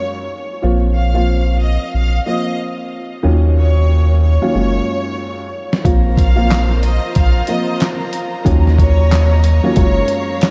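Swung sixteenths drive this gritty, tough boom-bap hip-hop excerpt, where a dark, woody upright piano with audible action noise and a round, deep analog bass (from 0.6 seconds) support a distant, focused violin section carrying the melody through diffuse ambient delay, until a compressed sampler-style kit with a thumpy kick, snare, hi-hat and handclaps enters up front at 5.7 seconds and intimate, smooth-topped sul tasto strings begin holding chords at 5.8 seconds, with vinyl crackle present throughout.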